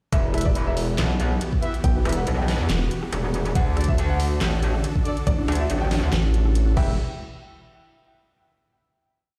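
A half-time 140 BPM groove in 4/4 with a light 16th swing drives this menacing, aggressive heavy wobble dubstep piece in E minor. An overdriven, knocking electronic kick sits up front with a deep-snared kit of claps, rim clicks, hats and crashes. Alongside them a metallic, bright FM wobble bass shifts its wobble speed, joined at 1.8 s by a nasal, dark vowel-sweep wobble bass that answers it, both saturated with chorus. Behind them sit huge detuned supersaw chords pumping to the sidechain, a soft felt-muted upright piano repeating a sixteenth-note riff over a pedal note with tape echo, and sparse echoing brass stabs in power voicings, all moving from Emadd9 to D and back before a final hit at 7.0 s rings out in a stone room.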